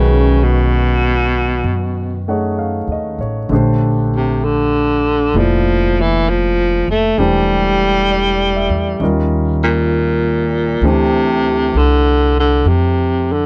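Intimate and smoky, this jazz ballad excerpt at 65 BPM with a gentle swing features a baritone saxophone carrying the melody up front with vibrato and a soft attack, over clear grand piano chords whose action noise is audible and a woody, thumpy pizzicato upright bass, all captured in a dry, close 1970s-style studio sound with light reverb.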